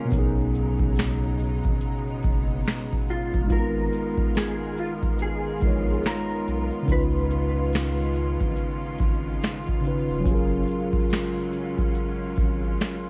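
A mellow tine electric piano opens this melancholic, reflective lo-fi hip hop excerpt, its cassette-tape coloring and low-pass filtering placing it up front as if heard through built-in speakers, while a distant, bright symphonic string section holds filtered chords beneath it. A booming analog drum machine with a deep kick, crisp snare, metallic hats and finger snaps drives a swung sixteenth-note feel, its overdriven sound re-recorded in a small room. A thick, saturated sine sub bass sits in the background alongside a grainy, close egg shaker. From 3.1 to 7.7 seconds, an electric guitar through a small old amp carries a brief picked melody, slightly broken-up and compressed, treated with ensemble chorus, analog delay and a low-pass filter. The harmony moves through B69, G#m69, C#9 and F#maj9. The mix is dry, with little reverb, and a layer of vinyl crackle runs throughout.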